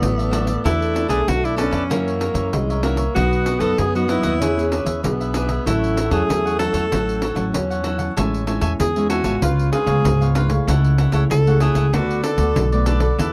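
Joyful and festive, this short samba and choro passage sets a breathy, clear alto saxophone melody, entering at 0.7 seconds, up front over a growling, raspy tenor saxophone second line that drops out at 8.1 seconds. Crisp picked cavaquinho, full-bodied fingerpicked nylon-string guitar, a woody, thumpy upright bass on gut strings and a jingly pandeiro played with hard hands carry the accompaniment throughout. From 8.2 seconds the alto takes a solo in a jazz style with light vibrato, all captured in a dry, close 1970s-style studio sound.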